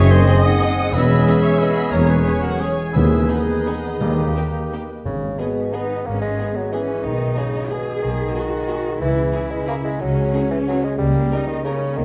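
This classical orchestral ballroom waltz in 3/4 moves with a dark, sweeping character and a flexible, rubato feel, heard as a fragment of a longer piece. A rich, vibrato-laden violin section carries the expressive melody, while a second, very quiet violin line, a smooth-topped viola section in the background and a clear, present bassoon fill out the accompaniment, and a ringing, fingerpicked harp spins arpeggios throughout. The cello section, with soft attacks and portamento, joins a close, bowed double bass section on the bass, supported at first by a very quiet, mellow tuba that drops out at 4.3 seconds. In the opening bars an airy, hollow flute, a cor anglais and a very quiet clarinet add second lines, while loose French horns and trombones hold sustained chords and distant, roomy trumpets punctuate with stabs, all falling away at 4.9 seconds. Soft-mallet timpani with calf heads enter in the background at 3.0 seconds and sound until 5.5 seconds, after which the strings, bassoon and harp carry on alone. 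The dark production sits in a recital-hall reverb that lends the ensemble a glowing depth.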